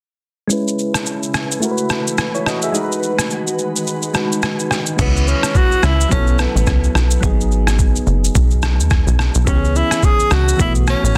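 Afrobeats with a sultry, mellow mood, this short excerpt from a longer piece rides a swung sixteenth-note groove in 4/4. A gritty, pitched-down sampler-style drum kit sits up front with a thumpy kick, rim click, shaker and crash, its snare soft-clipped. Soft, round electric-piano-like synth keys carry the accompaniment throughout, colored by chorus and plate reverb and shaped by a filter sweep across the opening bars. Meanwhile, a glassy, ethereal FM pad holds slow-blooming chords until 5.0 s. At that point a punchy, funky analog bass enters with fast, plucky decaying notes. Alongside it, a breathy tenor saxophone takes the solo in a jazz style with vibrato, scooped notes, delay and plate reverb over a looping C#m7, B7sus4 and G#m7 progression, all within a dense, heavily limited modern master.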